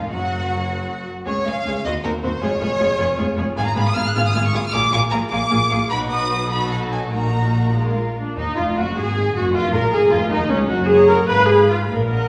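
A quick classical-period string orchestra movement in 6/8, urgent and restless with a rubato feel, where an up-front violin section sings the expressive, vibrato-rich melody over a distant, focused second violin line, a smooth viola accompaniment, lush cellos in the background and a bowed double bass section at the bottom, set in the wet reverb of a recital hall with a faint mains hum in this short excerpt.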